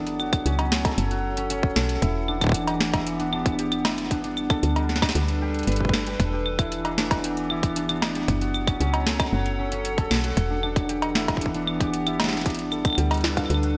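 A bright, 1980s-style digital sheen and a lush hall reverb frame this melancholic, intricate IDM excerpt at 115 BPM in E dorian, where a warbling, lo-fi pad with chorus holds dark sustained chords over F#m, Em7 and Gadd9, a mellow, thumb-plucked concert harp rings out arpeggios roughened by 12-bit sampler grit and digital delay, a woody, round FM bass anchors the low end, and an up-front, booming analog drum machine with a tonal snare, metallic hats, cabasa, claves and cowbell, drenched in gated reverb, enters at 0.1 seconds and is joined by a tight electronic kick from 0.3 seconds.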